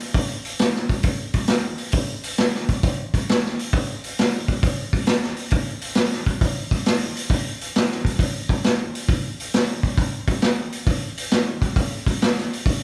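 A swung eighth-note feel in 4/4 gives this short rock cut from a longer piece a swaggering, driving strut. A vintage acoustic drum kit carries the whole 12.8 seconds on its own, with hi-hat, kick drum and snare drum all in play. The kit sits up front and mid-forward, its medium-tuned snare and tight kick framed by a rolled-off top that lends the drums a mellow, warm character. The sound has the feel of a band playing live together in one studio room, touched by light reverb.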